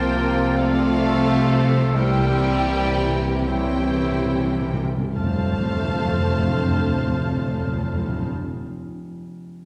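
A serene, lyrical slow romantic movement for symphony orchestra in F major, cut from a longer piece, opens with a lush, vibrato-laden violin section carrying the melody over a rubato pulse of roughly 34-46 BPM that slows through the first 5.2 seconds. Around it, a soft-attack second violin line, a very quiet hollow silver flute, a distant clarinet, a background oboe and focused violas weave inner parts, while mellow French horns and faint trombones hold sustained chords above a woody, dark double bass section and smooth cellos. Articulate, hard-mallet timpani enter up front at 1.9 seconds with a fill over the C7b9 harmony that resolves to F at 5.2 seconds, and the orchestra sounds from further back in a reverberant scoring stage.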